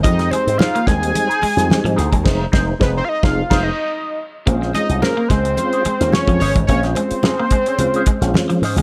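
Funk with a sly, driving straight feel, cut from a longer piece: a fat, detuned sawtooth analog lead with chorus and vibrato carries the melody up front and takes a solo through the first 4.5 seconds, while slap bass snaps through an envelope filter, a cloth-damped, thuddy drum kit with dark cymbals and a fat snare pushes up front, a clean, fingered electric guitar adds wah-treated accompaniment, a round tonewheel organ with key click and fast rotary speaker jabs stabs from the background, a twangy, slightly broken-up guitar picks a phased riff, low-tuned ringing congas enter at 0.3 seconds, the band hits accents from 2.3 seconds, and the harmony moves from Fm7 to Bbm9 at 4.5 seconds, all set in studio reverb.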